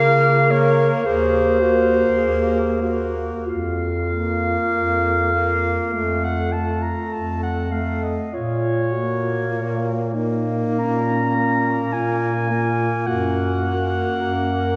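Classical and lyrical, this short cut from a longer piece for single-reed quartet moves at a slow, rubato 45-56 BPM in Bb minor, with a melancholic, solemn mood. A warm, vintage-toned clarinet carries the melody up front, singing between C5 and Bb5. Beneath it, a mellow alto saxophone with vibrato and a punchy edge shapes the second line, while a clear tenor saxophone, also with vibrato, holds a narrow accompaniment between A3 and Bb3. The bass clarinet sits up front as well, its soft attack and smooth top giving a rounded foundation from Eb2 to Db3. All four play throughout the 14.8 seconds, with harmony drifting from Bbm/Db through Ebm6, F and Bbm before settling on a rootless Ebm/Gb at 13.1 seconds. A wet church reverb with a 2.8-second decay and a dark production cast a spacious, shadowed glow over the ensemble.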